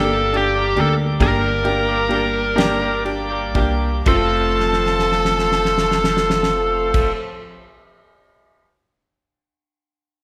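A moderate concert-hall reverb surrounds this tender, heartfelt six-eight pop ballad excerpt in F major, moving at 38-48 BPM in dotted quarters and slowing down through its opening as the chords pass from Gm to F. Up front, a distorted, bluesy lead guitar carries the melody over a clear, vintage upright piano and a thumpy pizzicato upright bass with gut strings. In the background sit a reedy tonewheel organ with key click on a slow rotary speaker and a compressed, bright twelve-string electric guitar playing arpeggios. A damped 70s kit with a fat snare and dark cymbals enters at 0.3 seconds and plays a fill from 4.6 seconds, while a lush, bowed violin section with vibrato adds a second line from 4.1 seconds.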